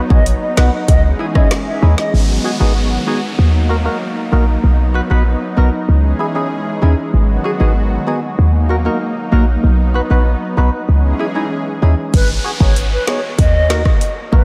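Bouncy and hypnotic, this dreamy dancehall excerpt, soaked in cathedral reverb, rides a punchy, tight 808-style bass and a deep-kicked afro-pop drum kit with woody snare and metallic hats that drop out at 2.1 seconds and return at 12.1 seconds alongside a distant, vibrato-laden baroque flute melody. Meanwhile a hollow, wave-folded organ stab with chorus and phaser carries the accompaniment throughout, a lush, nasal, detuned unison pad with sidechain pumping sustains chords until 12.1 seconds, and an electronic downlifter sweeps from 2.1 to 7.1 seconds and again from 12.1 seconds to the close.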